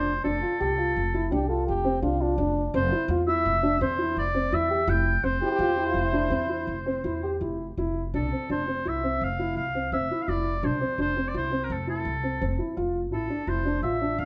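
Playful and restless, this excerpt of contemporary chamber music in an uneven 7/4 pulse sets a clear, vibrato-tinged oboe melody up front over mellow, boxy piano arpeggios and woody pizzicato upright bass, while a nasal, straight-muted French horn adds a brief second line from 1.3 to 6.8 seconds, all within a moderate recital hall reverb.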